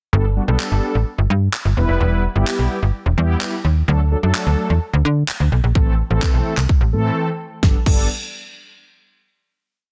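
A dense, heavily limited modern master with light reverb and digital ambience carries this short, euphoric dance-pop piece in G major at 128 BPM, built on a Gadd9, Em, D, Am progression that returns to Gadd9 for a final chord at 7.6 seconds, just after a brief break at 7.2 seconds. A snappy FM bass with a metallic attack plays a syncopated line with chromatic approach notes, pumping under sidechain, while a pop drum kit enters at 0.6 seconds with a punchy kick, fat snare, handclaps and crash in a four-on-the-floor beat. Behind them, mellow detuned sawtooth synth brass adds round, dark syncopated chords in drop-2 voicing, coloured by chorus, vibrato, a filter sweep and its own sidechain pumping.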